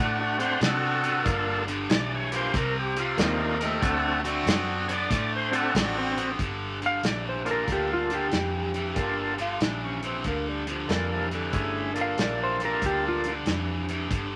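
A thick, key-clicking tonewheel organ through a slow rotary speaker accompanies this mournful, smoky electric blues shuffle excerpt, alongside a bright overdriven guitar riff, a round foam-muted bass and a punchy small-room drum kit, with brilliant, loose horn stabs early on, a dark, compressed slide lap steel with volume swells taking the melody at 6.9 s, and a raspy, growling tenor saxophone adding a second line from 9.4 s to 11.9 s, set in a moderate club reverb.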